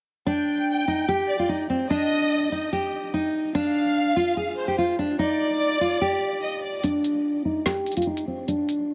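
A lightly reverberant small-room sound frames this tense, menacing half-time drill piece at 146 BPM, where a full-bodied, fingerpicked nylon-string guitar with fresh strings carries the low-pass-filtered, tape-echoed melody from 0.3 seconds alongside a lush, distant bowed violin section rich in vibrato and portamento, until at 6.8 seconds the strings stop, the guitar takes a filter sweep through to 8.9 seconds, and an electronic drill kit arrives with a woody snare and metallic hi-hats.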